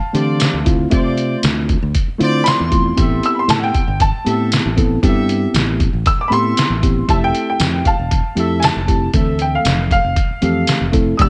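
Dry, this brooding, smoky fragment of straight-eighth soul blues features a woody, slightly detuned upright piano soloing up high over a reedy electric piano, a round, dark fingered electric bass and an up-front, muffled, pitched-down trip hop sampler-style kit with thumpy kick, tambourine and tape-warmed compression, while a distant, tight horn section with light vibrato holds sustained chords through Dm7, Am7 and Fmaj7.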